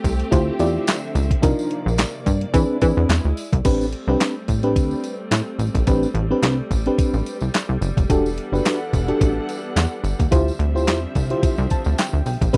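Early-eighties boogie funk at 108 BPM with a late-night, danceable swing on the 16ths, settling into A minor at 3.7 seconds: a thumpy, tape-colored 12-bit drum machine with kick, snare, hi-hat, handclaps and crash sits up front beside a punchy, plucky analog bass, while a mellow FM electric piano with tremolo comps on jazzy minor-eleventh chords and adds a fill at 11.4 seconds, a lush bowed string section holds smooth sustained chords low in the mix, and a jingly tambourine sparkles faintly in this dry, close, warm-sounding studio excerpt.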